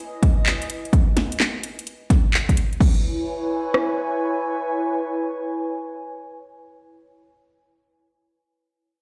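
UK garage in a two-step groove at 128 BPM with a swung, skippy, late-night feel in C# minor, this short cut opens on a drop where an overdriven house kit with a punchy kick and rim click (to 3.9 s), a cracking snare, metallic hats, handclaps and crash (to 2.9 s) sits up front over a breathy, detuned pad that pumps and shimmers with chorus as the chords move from Emaj7 to C#m7 at 2.8 s, all bathed in a lush hall and the stony echo of a bare room.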